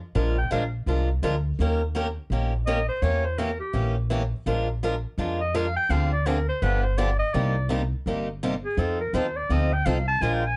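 Swinging and playful, this short cut of jazz manouche string swing in Bb mixolydian runs at 167 BPM, as a clear, roomy clarinet takes a jazz solo full of vibrato and scooped notes over a bright, boxy picked acoustic guitar with audible finger squeak and a woody, thumpy pizzicato upright bass on gut strings, framed by light reverb in a dark production.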